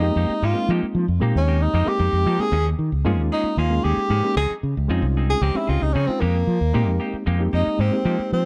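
Counted in a straight 7/8 at 228 eighth-note beats per minute, this jazz fragment in F minor has an intense, driving pulse, and it is cut from a longer piece. A round, amped fretless electric bass sits up front at the bottom, holding the low end under a tenor saxophone solo that runs the full 8.5 seconds. The saxophone carries the melody with a soft attack, vibrato and scooped notes in a jazz style, its tone warm and forward. A reedy electric piano, heard through its built-in speakers, plays a clean accompaniment shimmering with fast tremolo. A bright, picked semi-hollow guitar adds compressed stabs with a subtle chorus, while the harmony moves from Fm11 to Eb9sus4 and Dbmaj9 before settling back on Fm11 at 6.2 seconds, all in a dark production with light reverb.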